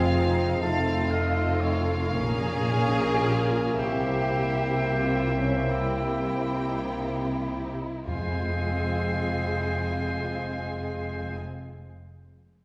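Heard from further back in a reverberant scoring stage, this melancholic, elegiac classical passage in F minor moves in a rubato 6/8 at 24-43 BPM, slowing over its first 8.1 seconds as a rich, vibrato-laden chamber violin section carries the melody above a second, more focused violin section, a mellow solo clarinet, a pure, distant silver concert flute and a roomy oboe, while bassoon, a lush viola section and a smooth-topped French horn section fill the middle, a ringing, thumb-plucked concert harp spins very quiet arpeggios, cello and double bass sections anchor the bass with expressive portamento in the basses, and hushed, round timpani on F enter at 8.1 seconds as the harmony returns to F minor.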